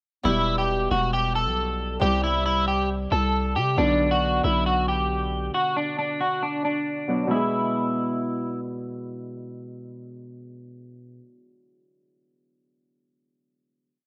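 Trap-flavored hip hop in E minor at 136 BPM with a half-time feel, this short, melancholic yet hard-hitting piece sets an up-front, slightly broken-up electric guitar playing a looping, scooped, picked melody through analog chorus and delay over a ringing, fingerpicked Celtic harp holding open-voiced chords, both repeated like sampled loops. A growling, buzzy 808-style bass drops long sub-bass notes with pitch slides until 5.5 seconds, as the chords move through Em, C and Bm before landing on a final E chord at 7.3 seconds. The gritty, dry hardware sound sits in a small room behind a low-pass filter, with the harp ringing on alone after the guitar stops at 8.6 seconds.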